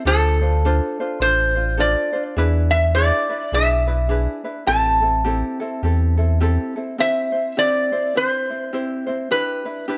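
Hawaiian music with a relaxed, sunny mood and a swung feel, cut from a longer piece. A metal-body resonator slide guitar carries the melody up front, its metallic, nasal slide tone picked with fingerpicks. Beneath it, a light, bright ukulele is fingerpicked as accompaniment across the whole clip, sitting well back in the mix. A deep, full sub bass with an added octave holds the low end with a fast attack and sustained sine-and-triangle tone, also up front, until it stops at 6.6 seconds. The harmony moves through minor-leaning seventh chords before opening onto a major chord as a new section begins at 7.0 seconds, all in a small room with light reverb.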